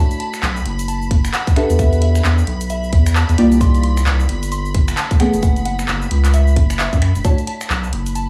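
Skippy and moody, this two-step UK garage excerpt at 132 BPM in B minor swings its 16ths over a thick, saturated, sidechain-pumped sub bass from 0.4 s and a tight, up-front electronic kick from 1.1 s, while an overdriven house kit of cabasa, finger snaps, handclaps and hi-hat sits beside dark, detuned, wave-folded chord stabs with chorus and tape echo, silky, warbling string-machine chords with ensemble chorus and sidechain pumping, and a pure FM synth bell melody with chorus and tape echo set in the background, all over a Bm11, Em11, Cm11, F#m11 progression in a small, dry room.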